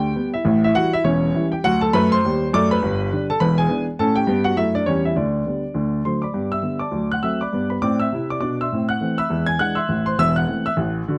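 Exuberant and swinging, this brief stride-piano jazz excerpt in G major races along at 203 BPM with a swung feel, as a solo baby grand piano, present and up front with long sustain, ranges from E1 to G#6 through chords like A7, D7b9 and E7 in a dry, close 1970s-style studio sound with light reverb, shifting into a new section at 6.4 seconds that moves through G, D7 and Am.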